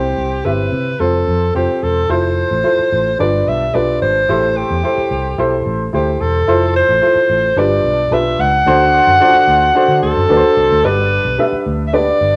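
A clear alto saxophone with soft-attack vibrato sings the jazz-style solo melody up front over a dark, woody, slightly detuned, boxy upright piano with short sustain and a round, foam-muted vintage electric bass, all three playing from the opening second in this danceable, warm 1960s-style soul groove, set in a large studio's wet reverb and landing on a G chord at 10.8 seconds.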